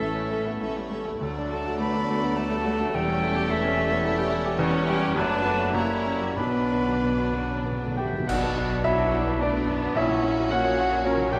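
Set in a wet, reverberant scoring stage, this excerpt from a romantic movement for piano and orchestra unfolds in a lyrical, passionate three-four with elastic rubato. A clear, polished baby grand sits up front carrying the melody, which it shares with a lush, smooth-topped violin section. A second, focused violin section, an airy silver flute, a distant oboe and a very quiet clarinet weave secondary lines around it, while a distant viola section and a soft bassoon fill in the accompaniment. Dark French horns hold sustained chords in the background, and rich cellos and double basses anchor the bass with bowed vibrato. Hard-mallet timpani enter with a fill at 6.4 seconds as the harmony settles into B minor, and at 8.3 seconds dark clash cymbals and concert bass drum mark an accent that opens the next section.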